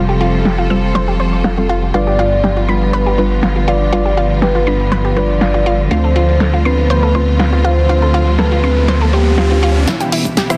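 A dark, rumbling detuned saw bass sits up front in this expansive, uplifting progressive house excerpt at 121 BPM in G mixolydian, pumping beneath lush bowed strings, round analog pluck arpeggios, soft background chord stabs with chorus, phaser and dub echo, a full-bodied octave-layered synth lead entering at 1.9 seconds, background house drums with a punchy snare, and a riser from 7.7 seconds leading into a drum fill and punchy kick at 9.9 seconds as the chords move from Fsus2 through G7 and Dm7 to Em.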